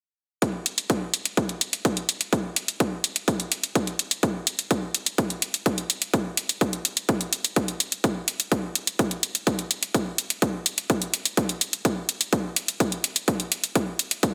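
A straight 4/4 EDM groove at 126 BPM drives this euphoric, triumphant excerpt, where an up-front, punchy electronic kick drum with overdrive and high-pass filtering plays alongside an overdriven, layered electronic hi-hat from 0.4 to 14.3 seconds, both re-recorded in a large room yet heard with little reverb in a dense, heavily limited modern master.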